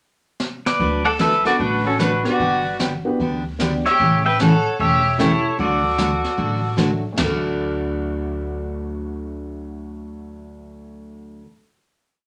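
Wet studio reverb surrounds this playful, cheerful western swing piece, which opens at 0.4 s with a fill on a jazz brush kit of dark cymbals, a high-tuned snare and a boomy kick, brushes sweeping the snare. An up-front, twangy pedal steel guitar carries a compressed, motif-based melody with slide and volume swells, partly doubled in thirds, while a clear, distant fiddle adds a bowed harmony line with light vibrato, mostly in sixths. Beneath them, a bright jumbo acoustic guitar plays a full-bodied four-to-the-bar rhythm with finger squeak, a woody pizzicato upright bass thumps a two-beat root and fifth, and a warm, vintage upright piano with audible action noise comps in syncopated close voicings; the steel and fiddle stop at 6.7 s, and guitar, bass and piano carry the final chord on to about 11.5 s.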